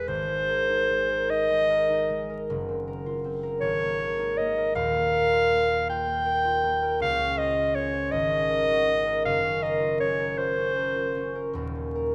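Dark-toned and touched with vinyl crackle in a moderate concert-hall reverb, this luminous, pastoral impressionist duo drifts in a rubato 6/8 at roughly 48-55 BPM, as a clear, up-front solo clarinet sings a classical-style melody until 11.5 s over a fingerpicked, ringing concert harp that carries on to 12.1 s through chords such as Abadd9, Gbmaj7#11 and Dbmaj7 in this fragment of a longer piece.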